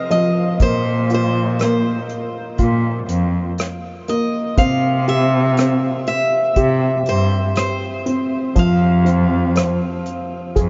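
A picked old ladder-braced acoustic guitar with a woody, old-stringed tone carries the melody over a slightly detuned upright piano from the opening of this melancholic, reflective acoustic folk-pop ballad excerpt, which moves at a slow 60 BPM in 4/4 through Fm, Bbsus2, C and F5. An unplugged drum kit played with bundle sticks, with hi-hat, rim click and a punchy kick, joins at 0.1 seconds, and a single bowed cello with nasal, expressive vibrato and portamento takes the bass from 0.6 seconds; the guitar, drums and cello all sit up front. A huge, wet ambient reverb sets the music in a vast, echoing space with a dull, rolled-off top end.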